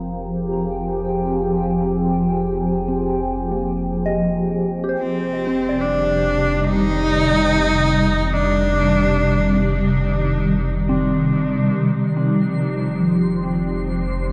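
Reflective and melancholic, this free-time ambient passage, cut from a longer piece, drifts on a shimmering, ethereal pad that sits up front with chorus, phaser and its own reverb, holding dark sustained chords that move from Fm7 to Cmadd9/F at 5.0 seconds and settle on Fm9 at 11.8 seconds. Beneath it a round, deep analog bass sustains a single low F with tube saturation, fading in alongside a soft, pure synth bell whose gentle FM arpeggios decay in the background through chorus, phaser and dub echo before stopping at 11.8 seconds. A clear, focused cello played by one bowed player carries a short vibrato melody up front from 5.0 to 10.0 seconds, its line trailing into dub echo. In the closing stretch a faint, twinkling granular texture with sparkling octave-up shimmer sits high above the pad. The whole mix is echo-heavy and bathed in a wet spring reverb, giving the music a suspended, dreamlike space.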